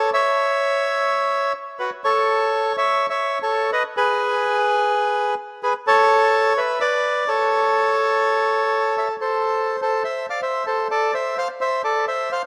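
A rough home-demo sound frames this short tango cut from a longer piece, with a moderate plate reverb giving the room a long, lingering tail. A lone bandoneon carries the whole recording, sitting up front with a reedy, bright and airy tone coloured by tape echo. The mood is passionate and sultry, set at 126 BPM in 4/4 but played with a free, rubato feel, tuned slightly above standard pitch at A4 = 441 Hz. The harmony moves through A, F#m, G#m and a Bm9 before settling back on A. At 9.4 seconds the music shifts from A major to A minor, landing on an Am chord. The bandoneon's line stays within a compact range from F#4 to F5 until it stops at 12.4 seconds.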